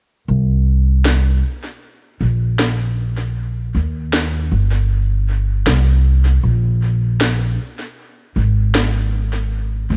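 A straight, unhurried 4/4 pulse carries this hazy, meditative ambient dub fragment, cut from a longer piece. A dark pizzicato upright bass with steel strings sits up front from 0.3 s, playing low in its register, while an electronic snare with a woody, tape-warm crack enters at 1.1 s, trailed by dub echo and sounding re-recorded in a small room. The home cassette recording is dry and close, with little reverb, giving the pair an intimate, lo-fi presence.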